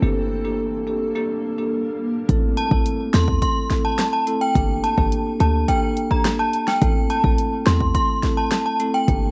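Sultry and tough, this dancehall excerpt at 106 BPM opens with a blurred, evolving granular pad and a filter sweep over up-front marimba and a punchy, tight 808-style bass. At 2.3 seconds a deep house kit with a fat snare drops in, and moments later an inharmonic FM synth chime rings out through chorus, phaser and tape echo, all cycling between Gmadd9 and Am with a cassette-home-recording haze.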